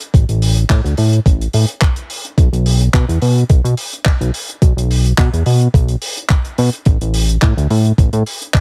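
Cosmic and groovy, this short nu-disco cut from a longer piece rides a steady 107 BPM in 4/4, with a light swing on the sixteenths. A thumpy, sampler-style electronic kick sits up front, carrying a small-room character. Beneath it, a tight acoustic funk kit with handclaps and hi-hat sits mid-forward at a lower level, as if captured in a small room. The fat analog bass, running from A1 to B2, blends detuned sawtooth, square and triangle tones with ring modulation and a filter sweep, giving a thick, mellow, sustained sound with a fast attack and sidechain pumping. The whole mix is dry and heavily compressed, like radio, and the bass drops out at 8.2 seconds while the drums carry on to 8.6 seconds.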